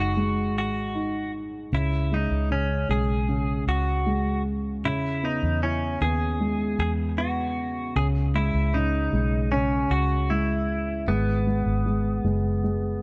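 A bright, twangy clean electric guitar carries the melody with a lush chorus in this heartbroken pop ballad at 77 BPM in C# minor, set over a mellow, dark baby grand piano and a round, punchy foam-muted fingered bass, all in a light reverb and dark, warm production, with the piano adding a brief fill at 12.6 seconds as this short cut from a longer piece closes.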